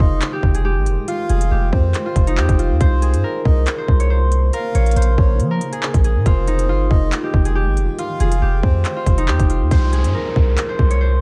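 A half-time drill beat at 139 BPM, with a hard-clipped kick, crisp hats and handclaps carrying vintage 12-bit sampler grit, sits up front beside a deep, decaying sine 808 bass, while a bright fingerpicked concert harp rings out the melody through a low-pass filter, a soft, breathy flute-like synth lead with vibrato, chorus and tape echo traces a second line, and a blurred, evolving granular cloud pad holds Fm7, Cm7 and Bbm7 chords in the background until the lead and pad stop at 9.7 seconds, when a downlifter joins the harp, bass and drums to close this cold, ominous hip hop excerpt in a digital ambience.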